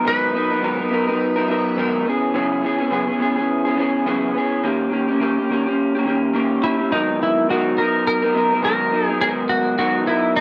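A lightly swung sixteenth-note feel in 4/4 carries this lonely, wistful indie pop fragment, cut from a longer piece, where an electric guitar through a small old amp plays accompaniment throughout, its slightly broken-up, lo-fi tone colored by analog chorus and a warbly pitch drift. Up front beside it, a bright, twangy clean lap steel guitar sings the slide melody with lush chorus and analog delay, stepping away at 2.0 seconds and returning at 6.6 seconds. A moderate spring reverb and digital ambience surround both guitars.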